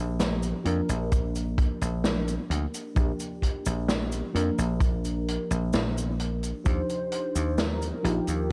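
A light reverb and small-room ambience frame this faded, nostalgic vaporwave excerpt at a slow 65 BPM in Bb major, where a round, dark FM electric piano with subtle chorus and analog delay and a foam-muted, punchy thumbed slap bass hold a Bb6 chord, a vintage kit of cabasa, hi-hat and medium-tuned snare bathed in gated reverb enters at 0.2 seconds, an up-front acoustic kick joins at 1.1 seconds, and a velvety, detuned sawtooth synth lead with vibrato, chorus and tape echo arrives at 6.7 seconds over an Ebmaj9 chord.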